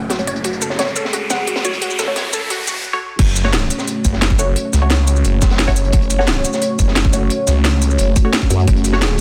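Cut from a longer dark technical drum and bass piece in F# minor at 175 BPM, this tense passage opens with a moody, detuned analog pad pumping under sidechain, bright arpeggiated analog plucks trailing tape echo, a rising sound effect and a snarling, growling distorted saw bass, while a muted phased dub chord stab and two drum kits slip in (a crisp, cracking electronic kit up front and a gritty, saturated breakbeat kit with a rolled-off top in the background) as filter sweeps build until the plucks and riser drop out at 2.8 seconds, a tight, tape-warm electronic kick lands the drop at 3.2 seconds, and a wobbling formant-swept bass flashes in briefly at 8.5 seconds, all inside a dense, heavily limited modern master with light reverb.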